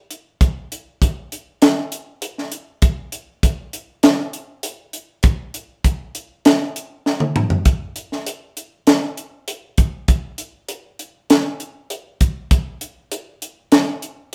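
A straight 4/4 groove at 99 BPM drives this jazz excerpt, carried entirely by a tight funk drum kit that enters at 0.1 seconds and plays through to 14.3 seconds. The mood is soaring and bright, with hi-hat, kick drum, snare drum and toms all heard across the kit. The acoustic drums sound dry and up front, marked by a high-tuned snare and a tight kick. At 7.1 seconds a drum fill leads the music out of its opening section and into a second one that carries on to the end. The band plays live in one room, and a moderate studio reverb gives the space a sense of size around the kit.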